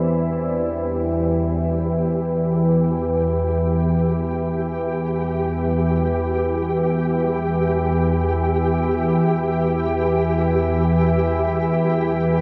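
Desolate and unsettling, this dark ambient drone drifts in free time, cut from a longer piece. An organ-like drone sits up front from the start, its detuned unison tones blending sine and triangle waves with a ring-modulated edge, swelling in slowly and sustaining with a long release under ensemble chorus and built-in reverb. From 0.8 seconds a flickering, grainy texture hovers high above, built from detuned triangle tones broken into granular fragments and softened with built-in reverb and shimmer reverb. The whole piece rests on a single E minor chord. A huge, wet reverb with a decay of 7.9 seconds wraps the two parts in a vast, cavernous space.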